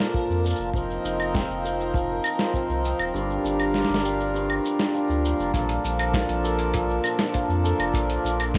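A reedy, breathing hand-pumped harmonium sits up front in this pastoral, warm folktronica excerpt, holding sustained chords that move from Bbmaj7 through F7sus4 and Gm7 before returning to Bbmaj7. Around it, a hammered dulcimer rings and shimmers in arpeggios, softened by cassette tape and trailed by analog delay. A muffled, compressed sampler-style kit of cabasa, claves, hi-hat and a medium-tuned snare keeps a straight 4/4 pulse alongside a dark, punchy kick, which drops out from 3.1 to 5.5 seconds. A round, deep sine sub bass anchors the low end, while a very quiet reversed, granular texture swells dreamily in the background until 5.6 seconds. The piece has the intimate feel of a home cassette recording, set in a small room with light reverb.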